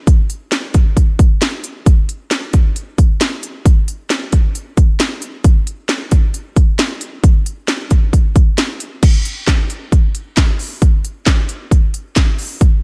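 A layered electronic house drum kit sits up front from 0.1 s, its punchy kick, cracking snare, crisp hi-hats, handclaps and crash cymbal driving a straight 4/4 pop groove at 134 BPM. The mood is upbeat yet wistful, and the dry sound carries some lossy compression artefacts. Cut from a longer piece, this short passage moves into a new section at 9.0 s before the drums stop at 12.7 s.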